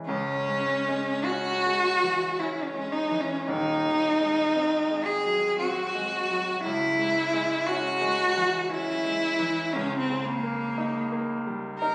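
A rich, focused cello sings the melancholic, yearning melody with vibrato, close and up front, over a bright concert grand piano whose deep bass anchors the accompaniment in this slow romantic classical duo in C# minor, moving in a rubato 3/4 at 48-59 BPM through a moderate concert-hall reverb, captured on a phone in the room with added studio reverb and compression, cut from a longer piece.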